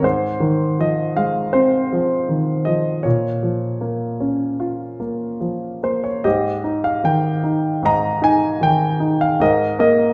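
Classical solo piano in a lyrical, peaceful mood, this short passage cut from a longer piece moves at a calm 72-80 BPM in 4/4 with a free, rubato feel, its harmony drifting from Fm7/Ab through Bbm toward Fm11/Ab and Absus2. A concert grand piano carries the whole 10.1 seconds alone, its worn, present tone sitting up front with deep bass and short sustain across a range from Ab2 to Bb5. A wet recital hall reverb of about 1.5 seconds surrounds it, suggesting a church or concert hall, and the phrase shifts into a new section at 6.3 seconds.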